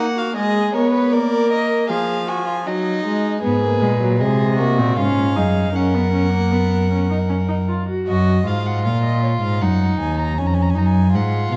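A driving yet contemplative baroque-style fugue for string quartet in 3/4 at 78 BPM opens in Eb minor with two gut-string violins: the upper carries the melody with light vibrato, while the second, close and airy-bowed, traces a nasal inner line over a reedy viola accompaniment. At 3.4 s the key turns to F# major as a rich, up-front cello enters on the bass, and the viola stops at 8.1 s, leaving the violins and cello to finish this passage cut from a longer piece. The period-style playing sits in a wet recital-hall reverb with a dark production.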